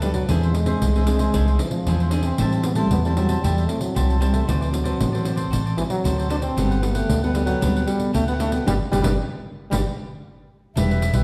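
Samba and choro in a sunny, joyful mood, this cut from a longer piece features a vibrato-laden, jazz-style solo trombone carrying the melody over crisp picked cavaquinho, a thumb-plucked classical nylon-string guitar in the background, a dark, round, foam-muted electric bass up front and jingly, close pandeiro, with a band accent from 8.7 to 10.8 seconds before a breathy, straight-toned flute enters at 10.8 seconds, heard in a reverberant church or concert hall.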